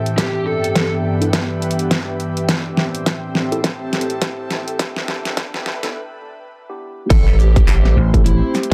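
Playful and gritty, this glitch hop excerpt opens on a warbling, nostalgic pad and an airy, breathy pad, both pumping against a punchy, overdriven electronic kick and an overdriven dubstep kit of deep snare, handclaps, hi-hat, shaker and crash, while a dark, overdriven lead guitar picks a brief phrase and a mellow tine electric piano with 12-bit sampler grit and delay adds stabs over Am7 and E7sus4. A build-up with a drum fill and a filter sweep leads to a break at 5.9 seconds. The drop at 7.1 seconds brings back the guitar and unleashes an aggressive, nasal, wave-folded synth bass up front, with a tube-saturated vintage slap bass entering at 8.0 seconds, all set in a dark production with a small room's reverb.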